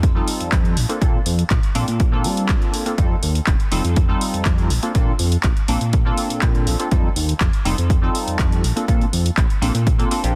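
A straight 4/4 pulse at 122 BPM drives this joyful, feel-good filtered disco house excerpt, where a punchy, tape-warm electronic kick sits up front beside a drum machine's handclaps and sidechain-pumped hi-hats, a fat, thick sawtooth bass with ring modulation and a low-pass filter sweep pumps beneath, and a funky polysynth comp coloured by chorus and phaser alternates between F7 and Bbmaj9 in light digital reverb, all within a dense, heavily limited modern master.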